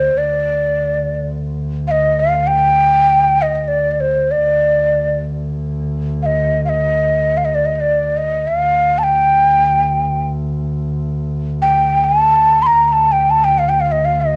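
Unmeasured and in free time, this short passage cut from a longer Arabic maqam ensemble piece unfolds in D maqam kurd, tuned to A4 = 442 Hz, with a melancholic, longing mood. A breathy, hollow ney carries the melody from 0.0 to 14.4 seconds, ranging from C5 to C6, its end-blown reed cane tone marked by vibrato, a crisp attack and lifted highs as it sits up front. Beneath it, a single bowed double bass holds a dark, woody drone on D2 for the full length, its own vibrato audible though it sounds distant and much lower in level. Both parts carry the soft grain of cassette tape and a plate reverb, set within a moderate studio reverb of 0.5 seconds. The whole was recorded at home on cassette.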